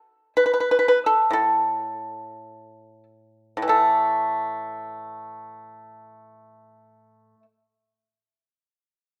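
A solo pipa, played with fingerpicks, carries this short, pastoral and serene fragment of traditional Chinese music, its mellow yet percussive tone set dry and up front. The rubato phrasing slows down through the opening 3.7 seconds before a second section begins, and the pipa falls silent at 7.4 seconds. A moderate reverberant space surrounds the recording, which is cut from a longer piece.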